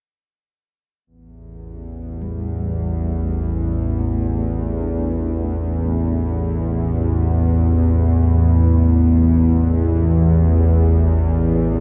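Cavernous and unsettling, this dark ambient drone in free time, cut from a longer piece and tuned to A4 = 439 Hz, settles on an A5 chord as an up-front, tense, string-like drone with a sawtooth edge and vibrato swells in slowly from 1.5 seconds, joined at 2.2 seconds by a very quiet gamelan-type bronze metallophone whose mellow arpeggios, struck with padded mallets, ring with shimmering beats inside a huge 7.7-second reverb and a dark production.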